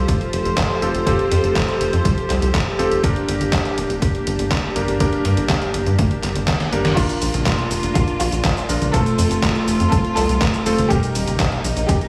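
Playful and sunny, this italo disco passage, cut from a longer piece, moves in a straight four-four pulse. A punchy, tape-warm electronic kick and a tight sawtooth sequencer bass with a fast filter pluck and digital delay drive the groove. A detuned 8-bit drum machine adds cabasa, handclaps, hi-hat, a medium-tuned snare, toms and crash cymbal under gated reverb, with a drum fill from 6.5 to 7.0 seconds. Above this, a dark string section holds soft, sul tasto chords with light vibrato and vintage 12-bit sampler grit, while a clear electric grand piano with a clangy low end punctuates the harmony with delayed stabs, moving from Fadd9 to Gm. At 7.0 seconds the chords shift through Bb, F and Eb, and a pure, floating violin section enters in the background with a delayed melody. The mix sits in a light digital ambience.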